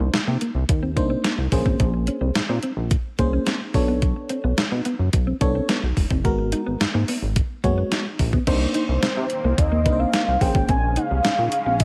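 Funky and late-night, this short excerpt of early-eighties boogie funk in C phrygian moves at 108 BPM over minor-ninth chords, with a crisp, overdriven 8-bit drum machine with gated reverb and a glossy chorused synth bass up front, a mellow FM electric piano, and a dark electric guitar riff with analog chorus set in the background, until at 8.5 seconds a lush phaser-treated unison pad enters and, from 8.8 seconds, a velvety synth lead with portamento and slapback echo carries the melody.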